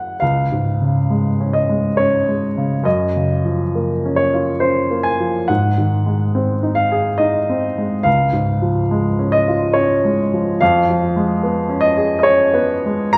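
A clear, polished baby grand piano sits up front in a wet concert hall, its notes carried by a reverb tail of about 2.1 seconds. This is a romantic classical nocturne for solo piano in D-flat major, dreamy and tender in mood, moving at 70 BPM in 3/4 with uneven beats and free rubato. The piano plays alone from the opening to 13.2 seconds, ranging from Db2 up to A#5, with a present tone. The harmony moves from Db through Gbmaj7 and Ab7 back to Db, then turns to C#7/E# near 10.6 seconds. Tuned slightly low at A4 = 437 Hz, the passage is cut from a longer piece.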